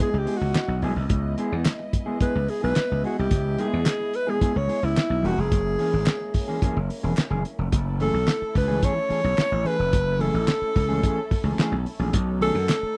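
A breathy, whispered alto saxophone solo opens this hypnotic 109 BPM funk piece over mellow, clean electric guitar and a dark, lush bowed string section in the background, while an overdriven, growly slap bass and a muffled, cloth-damped drum kit with a fat snare sit up front, faint crisp group handclaps join from 0.6 to 7.3 seconds, and the chords move from C#m7 through F#9 and F#m9 to B13 in a dry, close 1970s-style studio sound with a faint mains hum.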